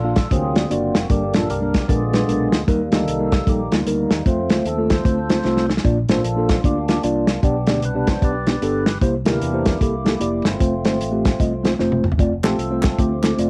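Uptempo gospel at 151 BPM in a swung 4/4, hopeful and soulful, cut from a longer piece and sounding like a home cassette recording in a small room. A fat, lightly overdriven tonewheel organ with key click and fast rotary speaker takes the solo across the whole 13.5 seconds, over a mellow tine electric piano accompaniment, a punchy fingered electric bass, and a muffled, lo-fi soul drum kit with a tight kick that sits up front and adds fills near 5.5 and 11.8 seconds. Crisp, close group handclaps join at 12.4 seconds as the chords move from D7alt through Gm, Eb and Bb to land on F.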